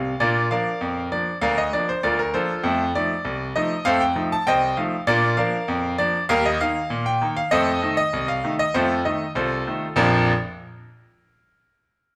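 A bright grand piano opens this ragtime excerpt with a fill at 0.0 seconds, then carries the whole passage alone in a lively, playful mood. The straight two-beat feel moves at 98 beats per minute, and the harmony circles home chords, a subdominant and a dominant seventh before settling back at 10.0 seconds, where a new section begins. The piano spans from deep bass notes to a ringing upper register, its tone brilliant and polished, sitting up front with long sustain. A moderate reverb from a large studio surrounds it, giving the sound of a live performance in one room. The piano stops at 10.3 seconds, as the passage is cut from a longer piece.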